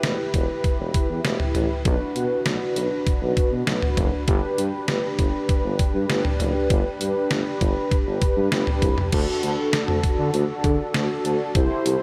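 A straight 4/4 pulse at 99 BPM drives this nocturnal synth-pop fragment, built on a detuned 8-bit drum machine with a thumpy kick, a medium-tuned snare, hi-hat, cowbell, crash cymbal and toms, all with a tape-warm, sampler-style character and placed up front. Beneath it, a vintage tuba with vibrato carries the bass line, while a dark, round synth brass with detuned sawtooth tones, a filter sweep and chorus sustains the chords Em, Bm and G before moving to D at 9.1 seconds. A huge ambient reverb soaks the whole mix in a dreamy haze.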